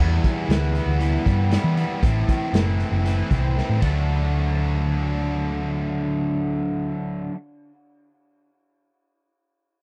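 A round, hollow-body electric bass sits up front in this jangly, carefree indie rock excerpt, alongside an overdriven, up-front stack guitar riff and a second bright garage guitar riff colored with analog chorus and tape echo over an Em, Am and D progression. A gritty, saturated drum kit with a punchy kick, a medium-tuned snare and a rolled-off top plays hi-hat, snare, kick and ride from 0.2 seconds, with a fill starting at 3.6 seconds before the kit drops out at 3.9 seconds. The sound is dry and close, in the manner of a 1970s studio recording.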